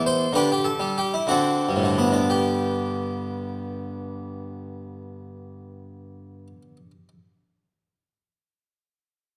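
A solo harpsichord, up front and brilliant with airy plucked octave strings in a French style, opens this brief, radiant excerpt of a baroque-style suite movement in G major, moving in a serene, rubato 6/8 at 56-69 BPM, slowing through its first 2.3 seconds toward a G chord before a second phase unfolds, all heard through close, detailed microphones in a moderate scoring-stage reverb.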